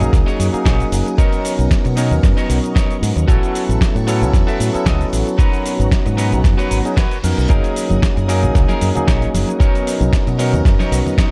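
A dark, warm digital ambience wraps this sunny, feel-good nu-disco excerpt, which moves at 114 BPM in F# major with a gentle swing on the sixteenths. Up front, a thumpy, gritty electronic kick sits beside a bright fingered electric bass shaped by an envelope filter, while a compressed sampler-style soul kit adds dusty hi-hat, shaker and a medium-tuned snare from a small room. A barky, clean tine electric piano carries the accompaniment through a tape echo, and a slightly broken-up, twangy electric guitar picks a riff coloured by subtle chorus and its own tape echo. Behind them, a lush vintage string machine holds soft-attack sustained chords, shimmering with phaser and ensemble chorus and breathing with sidechain pumping. The chords cycle through F#69, Bmaj9, A6 and G#m11, with a faint electronic reverse cymbal rising in at 6.8 seconds and close, dry congas joining the background at 7.9 seconds.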